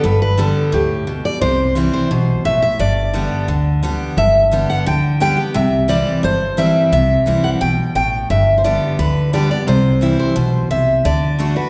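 From the first beat, a driving, virtuosic bluegrass passage in G major at 174 BPM opens with two picked steel-string acoustic guitars up front: a warm dreadnought carrying the melody high, and a bright, full-bodied jumbo with audible finger squeak picking accompaniment beneath it. A woody pizzicato upright bass anchors the low end, stopping at 11.5 seconds as the harmony moves among G, C and a closing D. The trio rings through a wet recital-hall reverb in this short section cut from a longer piece.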